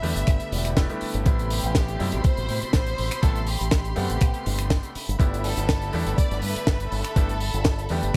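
A small room ambience frames this short, sleek cut from a longer nu-disco piece, moving at 122 BPM in a straight 4/4 groove and tuned to A4 = 441 Hz. A thumpy, tape-warm electronic kick sits up front from 0.3 seconds, beside a tight funk kit of finger snaps, hi-hat and a high-tuned snare. The fingered electric bass, bright and up front with its envelope filter, holds the low end, while a brilliant grand piano with audible action noise and long sustain plays the accompaniment with sidechain pumping. A dark, woody symphonic string section holds lush bowed chords, also pumping with the sidechain. Over this, a rich, focused studio violin section carries the melody with vibrato and an analog delay, as the harmony moves from G69 to Am9 and back to G69 at 5.0 seconds for a groovy feel.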